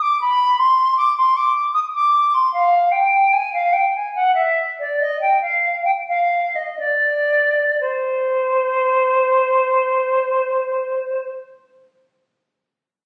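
Introspective and flowing, this brief passage, cut from a longer piece, is a baroque-style fantasia in C minor for unaccompanied silver concert flute. It moves in a free, rubato 3/4 somewhere between 58 and 80 BPM, and the pulse slows from about 1.4 seconds until the first section gives way at 7.8 seconds. The flute plays alone throughout, ranging from C5 up to Eb6 with a pure, metallic tone, vibrato and tongued notes that make each phrase expressive. The instrument sits up front yet carries a slightly distant quality, framed by a moderate recital hall reverb. A shorter second section follows and runs until 10.8 seconds, ending this fragment soon after.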